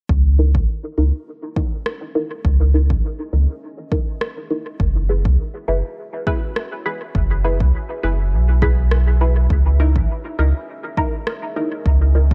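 This ambient dub cut from a longer piece has a dark, dry production with little reverb, and its mood is hazy and spacious. A round, sine-toned sub bass and an overdriven electronic kick sit up front from the opening, laying a deep floor under a lightly swung 4/4 groove. A muted, filtered chord stab enters at 0.4 seconds: its detuned sawtooth and square tones give short, mellow plucks through phaser, analog chorus and dub echo. A moody pad fades in from 1.4 seconds and sustains chords in the background, warbling with chorus and its own reverb. An overdriven electronic rim click joins at 1.9 seconds, trailing dub echo, as the harmony moves from C#m69 to F#9sus4 and back to C#m69.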